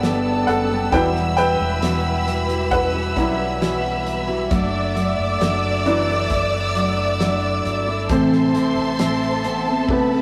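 This hopeful, tender pop ballad opens with everything at once: a bright, woody upright piano carries the lead, sounding brilliant and open above a slow, straight 4/4 pulse. Beneath it, a full-bodied steel-string acoustic guitar picks arpeggios while a round, dark fingered electric bass anchors the low end. A lush studio string section holds rich, focused chords with vibrato, and a distant violin section with a soft attack adds an expressive second line. The damped 70s drum kit keeps a dry feel with a fat snare, tight kick and rolled-off top, closing with a brief fill at 9.9 seconds. The whole band sits in a wet stone room with a rough, rehearsal-room character, and the passage is cut from a longer piece.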